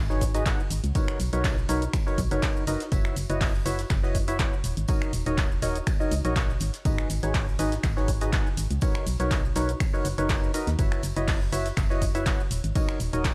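Joyful and uplifting, this piano house excerpt rides a lightly swung sixteenth-note groove in four, cut from a longer piece. A dark, hollow FM bass with an organ-like, decaying tone and tube saturation pumps against the sidechain from the opening second, while a mellow organ stab sits up front, its sine-and-triangle body touched with a noise layer, analog chorus and analog delay. A punchy electronic kick anchors the beat alongside an analog drum machine of finger snaps, handclaps, hi-hat, ride cymbal and shaker. Tucked far beneath is a very quiet brushed acoustic kit with hi-hat, a medium-tuned snare and tambourine. The harmony cycles through G#m7, Bmaj9, F#7sus4 and D#m7, all set in a small room with light reverb.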